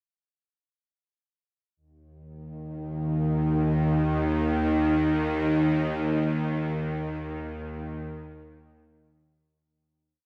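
A bowed-sounding solo drone enters at 2.5 seconds, bright, detuned and ring-modulated with a noise layer, vibrato and tape echo, sustaining up front inside a huge, cavernous wash of reverb in this desolate, tense ambient piece before fading out from 5.7 seconds to its close at 9.7 seconds.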